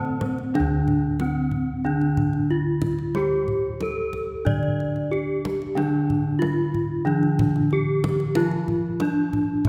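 Javanese gamelan in D slendro at 92 BPM, this serene, shimmering piece cut from a longer work sets a dark, smooth bronze metallophone melody up front, with paired tuning producing shimmering beats, over a bright, close-miked lower metallophone accompaniment. An airy metallophone struck with a wooden mallet adds a brief arpeggio flourish only in the first 0.5 seconds, while mellow, round bossed gongs played with padded beaters carry the bass until 9.1 seconds. A deep, dry kendang struck with hard hands drives the percussion, and the ensemble rings out in the long reverb of a church or concert hall.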